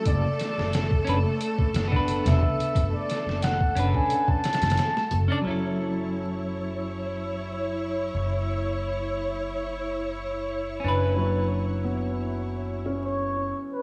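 Trip hop at 89 BPM in F# minor, smoky and hypnotic, where a muffled, pitched-down sampler drum kit with a thumpy kick plays up front until 5.3 s beneath a growly pizzicato upright bass, twangy clean electric guitar with harmonic tremolo and tape echo, biting bowed strings holding lush chords, and a veiled bucket-muted trumpet melody that drops out and returns at 10.8 s, joined at 11.2 s by mellow felt-muted piano arpeggios with 12-bit sampler grit, all set in an echo-chamber reverb with vinyl crackle.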